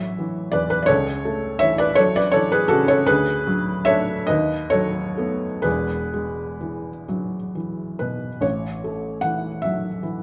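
Tender and dreamy, this short passage, cut from a longer piece, is a romantic classical nocturne for solo piano in A major, moving in a slow, rubato 6/8 at roughly 41-58 BPM counted in dotted quarters. A felt-muted upright piano carries everything alone from 0.0 to 10.2 seconds, ranging from E1 up to F#5. Its tone is soft and mellow, with short sustain and the audible noise of the action close at hand, so the instrument feels intimate and up front. The harmony drifts from A through A/C#, D and B7/D# to E, then settles back on A at 8.4 seconds as a new section begins. A moderate recital-hall reverb gives the sound a sense of space, and the production leans dark.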